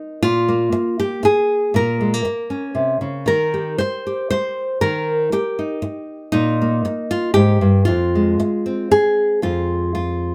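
Bathed in light reverb, this intimate, melancholic folk fragment, cut from a longer piece, features a bright, up-front nylon-string guitar fingerpicked in a classical manner at 118 BPM in a straight 3/4, ranging from F2 to C5 with audible finger squeaks as it moves through Bbm, Eb, Bb5 and Fm over about 10.3 seconds.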